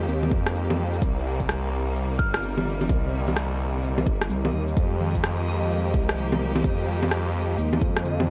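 A menacing, detuned saw bass sits up front in this short future garage excerpt. Its saturated unison tone evolves through a filter swell and pumps against the sidechain. The mood is wistful and rainy, with a swung groove in four. A deep, tape-colored electronic kick and a small-room kit of shaker, bongos and rim click drive the beat close to the listener, the percussion arriving at 0.1 seconds. Lush symphonic strings hold bowed, vibrato-rich chords moving from Fm11 to Cm7 and back. They are roughened by vintage 12-bit sampler grit and also breathe with the sidechain. Alongside them, muted felt-like synth keys add a very quiet, intimate, dark accompaniment. A crystalline FM bell rings out briefly at 2.2 seconds through chorus, phaser and analog delay. From 2.6 seconds a reversed, granular texture rises dreamily in the background inside its own reverb. The overall recording is dry and gritty, with a hardware edge.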